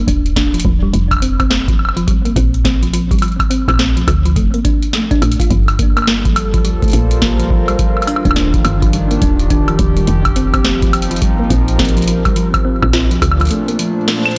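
IDM at 105 BPM with a 16th-note swing, melancholic and intricate, where a tine-like FM pluck with chorus and digital delay spins arpeggios over a woody FM bass, a deep electronic kick and a booming analog drum machine with crisp snare, metallic hats, woodblock and delay, joined at 6.1 seconds by a warbling, nostalgic tape-like pad, as chords such as Bbmaj9, Gm11 and F9sus4 pass through a blown-out, overdriven mix that closes on a band accent at 14.1 seconds.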